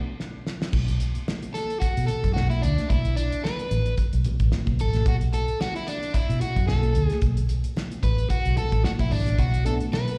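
A crunchy overdriven guitar, picked and carrying a slapback echo, takes a solo over a Bm7 vamp from 0.7 seconds in this sly, driving funk cut at 111 BPM in B dorian with a swung sixteenth feel, opened by a band accent and drum fill, while a thuddy cloth-damped drum kit with a fat snare and tight kick and a round, foam-muted fingered bass sit up front, bright high-tuned congas stay in the background, and a mellow tine electric piano adds brief stabs from 9.4 seconds, the whole band heard as a live gig through the venue's PA.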